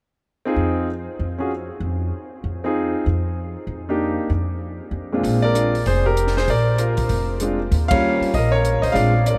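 Jazz piano trio swinging at 194 BPM in Bb mixolydian, sophisticated and warm in mood: a clear, intimate grand piano with audible action noise carries the melody up front over a woody pizzicato upright bass on steel strings, moving from Fm7 into a chordless stretch, before a compact cocktail kit with dark cymbals, a high-tuned snare and a punchy kick enters dry at 5.2 seconds over Bb9 and Eb9, the band hits an accent at 7.9 seconds, and the whole trio sits in a vast, echoing space, cut from a longer piece.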